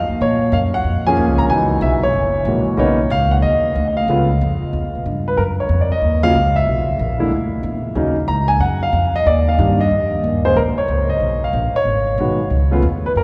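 Jazz piano trio music with a relaxed, sophisticated mood and a swung feel, cut from a longer piece, where a warm concert grand piano with deep, natural bass carries the melody up front for the full 13.2 seconds. A woody upright bass with steel strings plays pizzicato beneath it, also up front, while a wet cathedral reverb lends the sound of a church or concert hall. The harmony moves through rich extended chords such as A#m7, C#m11, F#9 and C#7#9 before turning to F#maj7 with the third omitted at 5.4 seconds and wandering through D#m7, Cm9 and G#m7.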